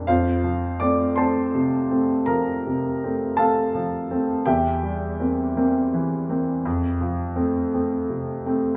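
A warm, smooth grand piano opens this short fragment of a romantic classical nocturne, sitting up front with a vintage character as it moves from F to C7/E at 4.5 seconds and settles back on F by 6.6 seconds. The mood is serene and tender, unfolding in a slow, rubato 12/8 at 55 BPM in dotted quarters, with the solo piano spanning E2 to D6. A wet recital hall reverb lends the playing a spacious bloom.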